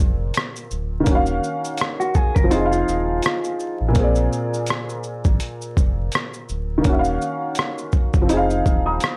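A swung 83 BPM groove in 4/4 comes from a compressed, pitched-down trip hop sampler-style drum kit, up front with a thumpy kick, hi-hat, rim click and shaker, beginning at 0.3 seconds, while a deep sine sub bass with octave holds sustained notes beneath. Over Bb9, Ebm9 and Fm7 chords in Eb dorian, a felt-muted upright piano plays intimate, short-sustained accompaniment colored by cassette tape, a low-pass filter and plate reverb, and a dark, clean, fingered electric guitar adds a brief second line from 2.0 to 3.8 seconds through spring reverb and tape echo. This reflective, nostalgic lo-fi hip hop excerpt carries a dry, gritty hardware sound with vinyl crackle and light reverb.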